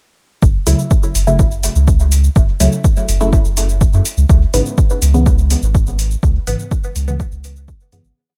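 A punchy, tape-toned electronic kick sits up front, driving a steady four-on-the-floor pulse through this short, meditative and nocturnal dub techno piece at 124 BPM in F# minor. Beneath it, a deep, round sub bass plays a syncopated riff with a soft, sustained tone and sidechain pumping. Metallic, overdriven shaker and hi-hat layers fill in programmed hats and a backbeat at a lower level. Sparse, muted chord stabs built from detuned sawtooth tones carry a resonant filter pluck, a moving notch and phaser, and they trail dub echoes while pumping against the kick. The stabs move one chord shape in parallel from F#m7 to C#m7 at 4.3 seconds. The dry mix holds a single groove from 0.4 seconds and fades out from 5.6 seconds.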